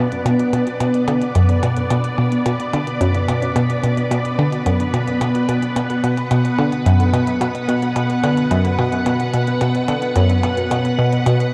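A straight 4/4 pulse of clicky electronic hi-hats and percussion blips, touched with tape echo, runs beneath a nasal, detuned analog pluck riff sitting low and up front with chorus, phaser and tape echo, while a lush, full-bodied string machine ensemble holds sustained chords throughout this mysterious, expansive stretch of sequencer-driven space music, all bathed in a huge ambient reverb and the warbling pitch drift of worn cassette tape.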